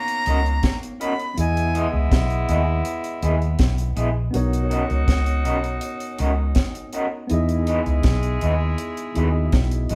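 Tender and sweet, this lovers rock reggae passage moves at an easy 81 BPM in a straight 4/4, cut from a longer piece and built on a gentle sway between Bmaj9 and Emaj7. A breathy, reedy jazz flute with a crisp, chiffy attack carries the melody up front but only for the opening 2.1 seconds, sitting high between G#5 and B5. Beneath it, a bright, vintage-toned saxophone section plays a lower second line throughout, while a worn, slightly out-of-tune tine electric piano adds clean accompaniment trailed by dub echo. The deep reggae drum kit enters at 0.1 seconds with a high-tuned snare, tight kick and hi-hat, dry and close, joined at 0.3 seconds by a dark, round, foam-muted fingered bass and a slightly broken-up, twangy guitar whose picked stabs shimmer with tremolo through a small old amp. The band sounds as if playing live together in one room, wrapped in a wet studio reverb that lends the groove an intimate glow.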